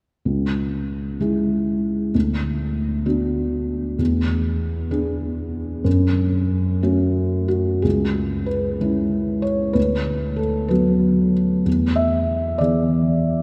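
A lilting 6/8 pulse, felt in slow dotted-quarter beats, bends and breathes freely with rubato throughout this neoclassical minimalist piano miniature. A felt-muted upright piano plays alone from 0.3 s to 13.4 s, its tone soft, dark and mellow through the thick felt, with the mechanical action noise clearly audible and placed up front for an intimate, close-by presence. The harmony moves through a short cycle of C#m, Bm/D, E7 and F#m, then starts the cycle again at 7.8 s, where the second section begins. The piano spans a range from C#2 up to E5, so deep bass notes sit beneath a gentle upper register. Around this close, hushed sound, a wet cathedral reverb with a long tail opens into a vast, echoing space, giving the wistful mood a sense of solitude. The passage is cut from a longer piece.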